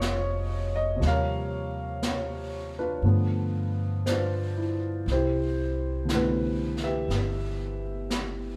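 Recorded live in one room with a moderate stone-room reverb, this romantic, late-night jazz ballad fragment at 59 BPM swings in 4/4 as an intimate, up-front grand piano with audible action noise and deep bass accompanies through Bbm7, Eb13 and G9 before settling into C major on Cmaj13 at 5.1 s, supported by a woody, dark pizzicato upright bass and a quieter, natural brushed drum kit with a medium-tuned snare and hi-hat.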